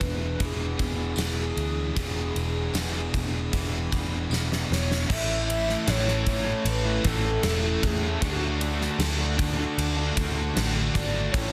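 A steady, straight 4/4 pulse at 77 BPM anchors this dreamy, hazy shoegaze and dream pop rock excerpt in A major, driven by an up-front gated 80s kit with a fat snare, punchy softly clipped kick, bright crash and ride cymbals, and a drum fill from 4.3 to 5.1 s, over a dark, round, foam-muted vintage electric bass, while a jingly tambourine appears very quietly from 1.2 to 4.5 s. Three overdriven guitars hang back in the mix, one bright, crunchy and double-tracked, one steeped in lush chorus and another trailing reverse reverb, as a pure, soft sine lead with vibrato, chorus and slapback echo carries the melody over chords moving from E7 to A at 5.1 s and on to D. A small room ambience and a dense, heavily limited modern master wrap the whole piece in a thick haze.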